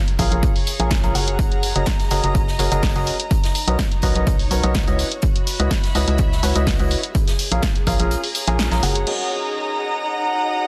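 A clear, woody, slightly detuned upright piano riff with tape echo, a low-pass filter and sidechain pumping drives this joyful, uplifting piano house excerpt in F# major at 125 BPM, set over a hollow, organ-like FM bass, a dry, punchy electronic kick that drops out at 8.1 seconds, a punchy analog drum machine's snare, hi-hat and crash, an airy big-band drum kit in the background, and a dark, intimate studio string section pumping beneath, before a lush symphonic violin section enters with a filter sweep at 9.1 seconds, all within light reverb and a dense, heavily limited modern master.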